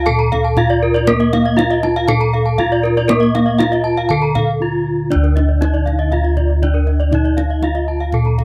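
Balinese gamelan at 119 BPM in D pelog, brilliant and shimmering, where a dark, smooth bronze metallophone carries the melody up front over round, mellow bossed gongs in the bass, two more horn-mallet metallophones in a boxy small room ring out arpeggios with the shimmering beats of paired tuning, a tight, saturated kendang sits in the background, and a brief break at 4.4 seconds ends in a drum fill, all in a dry, close 1970s-style studio sound cut from a longer piece.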